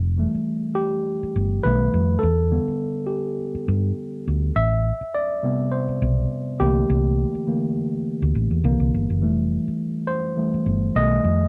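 Lush 1970s-style soul with a cinematic, silky mood and a gentle sixteenth-note swing, where a worn, slightly out-of-tune tine electric piano, lightly overdriven through a combo amp, takes a solo over rich chords such as Fmaj9, Em7 and C13, supported by a dark, round, hollow-body short-scale electric bass played with the fingers, both up front in a dry, close 1970s-style studio sound in this brief cut from a longer piece.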